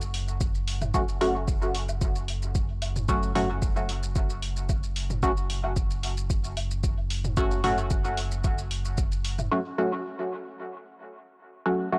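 Hypnotic, meditative dub techno at 112 BPM in F# minor, cut from a longer piece, where a round, dark analog bass and overdriven kick drive a dry, gritty groove with electronic shaker and hi-hat and background toms and woodblock trailing dub echo, while a muted, detuned chord stab with chorus, phaser and cassette-tape grain enters at 0.9 seconds and rings on alone from 9.5 seconds over an F#m chord.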